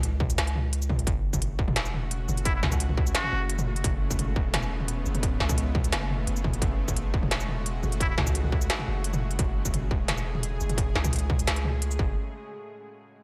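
Half-time drum and bass with a dark, spacious mood, built on a deep, mellow sine 808-style bass and a distorted electronic kick beneath an up-front industrial kit of clanging snare and crisp hats, while a tense, nasal string-like drone with vibrato and sidechain pumping enters at 1.5 seconds and a bright straight-muted trumpet with scooped, jazz-style notes and delay sounds in brief phrases from 2.5 seconds, all over a single F#madd9 chord in a light reverb.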